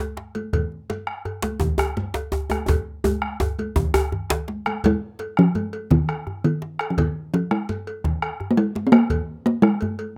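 An up-front talking drum carries the melody in this powerful, festive West African drum ensemble piece in a straight 12/8, entering at 4.9 s with a close, dry, short-ringing voice that moves between Eb3 and C4. Beneath it, a round bombo with live-room character anchors the groove, joined by a tight, cracking djembe played with soft hands and a compressed, saturated metallic cowbell. Thick-skinned, medium-tuned congas add a vintage, band-limited color to the texture. A second djembe, struck with hard hands and buzzing with metal rattles, sits up front from 1.4 s to 4.5 s, and a drum fill from 2.7 s to 4.8 s closes the opening section. The rough home-demo mix places the ensemble in a moderate small room, and the passage is cut from a longer piece.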